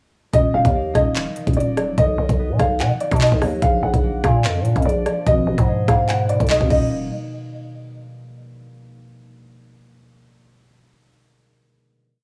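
Menacing and cold, this short half-time drill hook at 146 BPM in Eb harmonic minor sets a dark, worn grand piano's looping melody, treated with cassette tape and analog delay, over a background concert harp's ringing fingerpicked eighth-note arpeggio, while a growling, buzzy 808-style bass holds long sub notes with pitch slides under an up-front electronic kit of knocking kick, crisp skipping hi-hats with fast rolls, handclaps, rim clicks and crash, all moving through Ebm, B, Bb and Abmadd9 before a final hit from 6.9 seconds in small-room cassette ambience.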